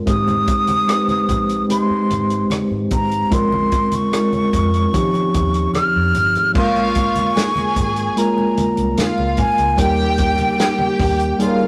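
A rough rehearsal-room recording with warm saturation and a moderate stone-room reverb frames this lush 1970s-style soul piece at 74 BPM in a straight 4/4. Up front, a mellow, clean tine electric piano carries the chords from Abmaj7 through Bbm9 and Eb13, while a breathy, hollow concert flute with a soft attack and vibrato sings the melody high above it. Underneath, a dark, foam-muted fingered electric bass gives a round, punchy low end. A distant, roomy drum kit with dark cymbals, a medium-tuned snare, rim clicks and a tight kick plays beneath the piano and flute, joined by thick-skinned, low-tuned congas in the background. At 6.6 seconds a smooth, bowed studio violin section enters as a second line, adding an even, lush ensemble layer as the harmony moves to Bbm7 and Eb7. The mood stays smooth and lush throughout this short cut from a longer piece.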